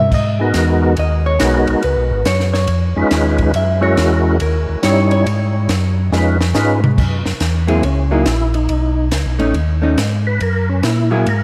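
Soaked in lush hall reverb, this dreamy, swinging soul jazz organ trio excerpt opens with a clean, picked hollow-body electric guitar solo over a round, mellow tonewheel organ bass with slow rotary speaker and key click, while a dry, compact cocktail drum kit with dark cymbals, a high-tuned snare and a punchy kick plays a fill at 6.1 seconds before a fat, lightly overdriven percussive tonewheel organ, colored by chorus vibrato and tape echo, takes the soulful solo from 7.0 seconds.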